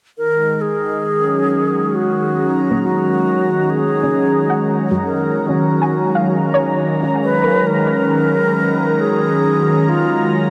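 A vast, wet reverb with a long tail bathes this reflective, melancholic ambient excerpt in Eb minor at 68 BPM. An airy, close-miked alto flute with vibrato and delay carries the melody up front beside a warm, detuned sawtooth pad holding sustained chords with chorus. A warbling, vintage organ-like drone enters in the background at 1.8 s, dark, round pluck arpeggios with chorus and delay join at 2.7 s, and the harmony shifts from Ebm7 to a new chord at 7.2 s.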